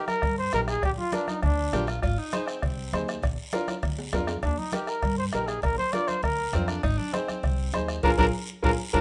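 A close, dry band sound sits in a moderate studio room in this festive, joyful cumbia, cut from a longer piece and moving at a brisk straight pulse. Up front, a dark, breathy trumpet carries the melody with vibrato, soft attacks and scooped notes, playing from the start, dropping out around 1.9 seconds and returning at 4.4 seconds. A clear tenor saxophone with light vibrato adds a smooth second line in two spells, the later one starting at 6.5 seconds. Underneath, a clear, woody upright piano supplies accompaniment, and a growly pizzicato upright bass with steel strings anchors the chords. The percussion blends a soft-beater bombo, thick-skinned congas struck with hard hands, a raspy guiro and ringing cowbell and timbales set in the background. Drum fills punctuate the groove, and the band hits an accent together in the final second over a dominant seventh chord.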